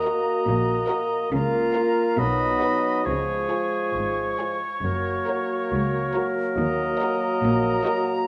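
Soaked in the lingering reverb of a recital hall, this short excerpt from a quick classical-period symphonic movement sounds restless and dramatic, moving at 139 BPM in a straight 4/4. A very quiet violin section carries the melody with expressive vibrato and portamento, its tone lush and close, while a second violin section adds a dark, woody line with soft attacks. Around them the winds weave supporting lines: a pure, silvery flute on top, a clear oboe that sits distant and roomy, and a bright, vintage-toned clarinet beneath. A mellow bassoon and smooth, even violas supply accompaniment, and a French horn section holds warm sustained chords. Rich, close cellos and bowed double basses enter together on the bass line at 0.5 s. The harmony moves from D# minor through A# minor over C#, B, C# and F# before returning to D# minor, and the passage breaks off at 8.3 s.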